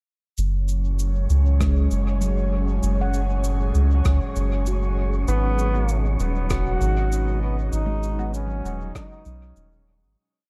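An echo-heavy, small-room mix gives this meditative, hazy ambient dub piece its drifting space. A breathy pad with chorus and phaser holds slowly shifting chords over a round, up-front sub bass, while a wind-like tuned noise layer sustains a high note and a sparse, echoing cabasa and rim click pattern sits over a soft, punchy electronic kick in the background. From 1.6 seconds a mellow handpan, roughened by vintage 12-bit sampler grit and dub echo, drifts in three slow loops of unequal length; at 5.3 seconds a clear, distant trombone begins a free solo melody with dub echo, joined by very quiet, muted chord stabs moved in parallel, as the music fades out from 6.9 seconds.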